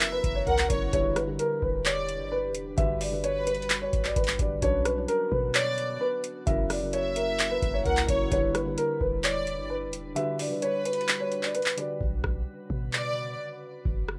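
A dark, boxy concert grand piano carries the melody in this hard-hitting, melancholic half-time trap excerpt. It is joined by a soft, sul tasto violin section with delay and a felt-muted upright piano, and both pianos are filtered. Beneath them, a glassy FM pad with chorus and reverb holds sustained chords, while a deep, boomy 808-style bass and an up-front analog drum machine with vintage 12-bit grit supply kick, metallic hi-hats, handclaps and rim clicks. The kick drops out at 10.2 seconds, both pianos stop at 12.0 seconds for a break carried by the strings, pad, bass and drums, and the violins end at 13.4 seconds.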